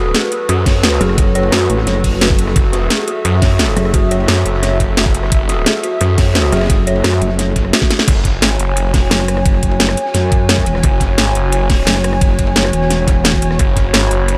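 A snarling, distorted saw bass growls up front through this dark technical drum and bass excerpt at 174 BPM in F# minor, tuned to A4 = 436 Hz, its detuned unison tone thickened by tube saturation and pumping against the kick. A metallic FM wobble bass sits alongside it with a chorused, mellow edge, dropping out between 4.3 and 6.5 seconds. An up-front drum and bass kit with a cracking snare, metallic hats, rim clicks and crashes enters at 0.1 seconds, and the electronic kick knocks in at 0.7 seconds, while a smoother, gritty breakbeat kit with a high-tuned snare and rolled-off cymbals sits in the background. Above them, a square-and-saw analog pad holds moody, wave-folded chords with a slow attack, and an eerie, inharmonic detuned bell traces chorused, phased arpeggios with delay until 7.8 seconds, where a drum fill leads into the second drop. The harmony moves from F#m to a bare F#5 at 8.1 seconds. 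The mix is dry, loud and mechanical in mood.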